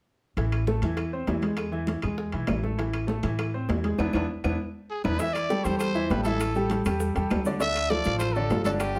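A driving salsa groove in straight 4/4 at 199 BPM carries this passionate fragment of a longer piece. Congas with a thick skin, tight high-tuned bongos and woody claves sit in the background, and ringing metal-shell timbales sound close, while the up-front pizzicato upright bass thumps out a dark, gut-string line. A bright grand piano, also up front, plays the accompaniment over chords moving from Am and E in A harmonic minor, and a band accent with a drum fill builds to the shift into A minor. At 4.9 s a raspy, growling trumpet takes the solo melody with light vibrato and a brilliant, gritty, punchy edge, and grainy maracas join quietly at 5.2 s. The whole band is heard from further back in a studio room with a wet reverb.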